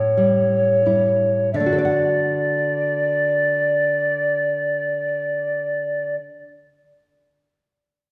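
A lush church-like reverb with a long tail surrounds this short, lyrical fragment of a romantic duo in D major, moving tenderly in a rubato 6/8 at 30 BPM in dotted quarters. An airy, hollow tenor recorder sings the melody up front with a straight tone and crisp chiff, while a full-bodied, fingerpicked nylon-string guitar accompanies with a warm, fresh-string tone and the odd finger squeak. The music slows over its opening 1.5 seconds on an A7 chord before settling onto D for the rest of the phrase.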